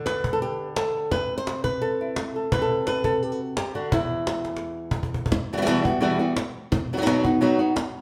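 Wet studio reverb with a one-second tail surrounds this short flamenco clip, and the room is heard from further back even though both players sit up front in the mix. Intense and mournful, it moves at 171 BPM in a straight 4/4 in E minor, tuned to A4 = 445 Hz. The fingerpicked flamenco guitar carries the melody across a range of E2 to C5, its fresh strings sounding bright, with audible finger squeak, over harmony that drifts from Am/C to Am69/C. The cajon gives a woody, small-room sound from hard hands with faint snares, and it plays a fill from 4.4 to 5.3 seconds. At 5.3 seconds the music shifts to a new section built on Emadd9 and then B, before the clip is cut from the longer piece.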